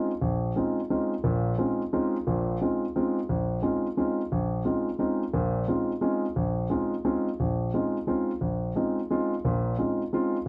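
A warm grand piano plays alone and up front throughout this short jazz passage, cut from a longer piece, sounding an Eb13sus4 chord across a range from Bb1 to F4. The music moves in a swung three-beat metre with an intense, spiritual mood. A moderate studio reverb surrounds the piano, and a faint mains hum sits beneath it.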